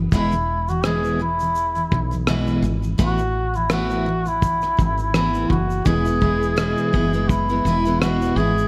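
Carefree and heartfelt, this acoustic pop fragment moves at 84 BPM in 4/4 with a light 16th-note swing, cut from a longer piece. A full-bodied picked steel-string acoustic guitar and a woody, growly fretless electric bass open together, while a warm duduk carries the melody with vibrato in a folk style, sitting up front yet roomy and distant. A cloth-damped, thuddy drum kit of kick drum, rim click and shaker sounds muffled and gritty, its tight kick framed by gated reverb. The harmony rests on E, shifts to Asus2 at 3.0 seconds, and returns to E as a new section begins near 5.9 seconds, where a dark, mellow upright piano slips in barely audible. The whole carries a bright 1980s-style digital production with light studio reverb.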